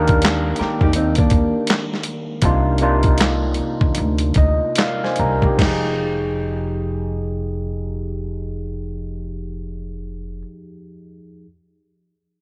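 A barky, overdriven tine electric piano sits up front through a combo amp in this smooth, soulful neo-soul and R&B piece in F dorian at 71-84 BPM with a swung 16th feel, playing over Ebmaj7, Cm11 and Fm9 chords and adding a fill at 4.0 s, while a woody pizzicato upright bass holds the low end, a dark, clean hollow-body jazz guitar offers a brief second line from 0.6 s, and a gritty, tape-warm sampler-style drum kit with thumpy kick, snare, hi-hat, handclaps and crash plays as the tempo eases before dropping out at 5.8 s, all set in a light digital ambience.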